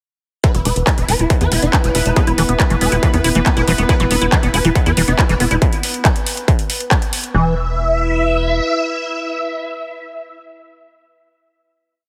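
A swarming, aggressive rave lead dominates this short, driving psychedelic trance piece at 139 BPM, its bright detuned unison voice spinning a repeating sixteenth-note riff over a pedal note, colored by chorus, phaser, tape echo and sidechain pumping. Beneath it a distorted four-on-the-floor kick sits up front with metallic hats and claps, a tight sawtooth sequencer bass rolls in sixteenths, and from 2.2 s a squelchy, resonant acid line loops in three steps that drift against the bar. A pulsing gated texture holds a high note in the background while a warbling, lo-fi pad of slowly shifting chords enters at 1.1 s and sustains with the lead through the final chord from 7.3 s, all under a heavily compressed, radio-like sound with light digital ambience.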